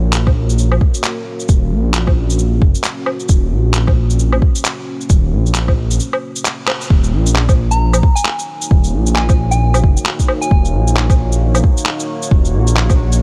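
A deep, rumbling detuned saw bass sits up front in this wistful, rainy future garage excerpt at 133 BPM in Eb dorian, joined by a tape-warm electronic kick and muffled, pitched-down handclaps, shaker and woodblock with a 16th-note swing. A moody ambient pad holds sustained chords underneath with chorus, built-in reverb and sidechain pumping, moving from Gb/Eb to Ebm7 after a break and drum fill around 6.7 seconds. From 7.7 to 11.0 seconds a soft, pure FM bell adds a gentle melody colored by chorus, phaser and analog delay, all in a dry mix.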